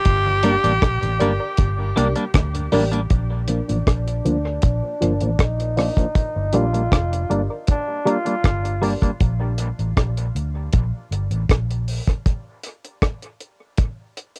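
Dub reggae in G minor at 79 BPM, this meditative, hypnotic cut from a longer piece opens with a raspy, gritty tenor saxophone melody soaked in dub echo and cassette tape grain, over a dark, foam-muted bass and a dry, tight-kicked drum kit of hi-hat, kick and rim click, both up front. A soft, flute-like tonewheel organ with key click and slow rotary drifts in only until 3.0 seconds, while a twangy clean electric guitar and a mellow, phased chord stab in the background, both filtered and echoed, move from Gm to Bb and back. A filter sweep runs from 3.1 seconds, and at 9.2 seconds the music drops to a break where the bass plays on until 12.0 seconds and the drums carry on alone to the end, all in a light-reverb, home-cassette sound.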